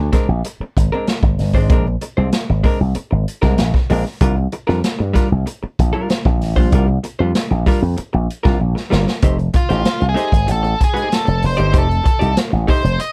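A strutting, funky groove at 96 BPM in straight 4/4, cut from a longer piece in F mixolydian, is anchored by a bright, punchy slap bass pushed through an envelope filter and a boomy, roomy big-band drum kit with a medium-tuned snare and rolled-off top. A dark, clean hollow-body jazz guitar comps underneath over Bb9 and C9sus4 chords, and after a drum fill around 8.6 seconds the harmony moves to F9. At 9.6 seconds a dark, fuzzed-out octave lead guitar steps up front for a short solo in a dry mix.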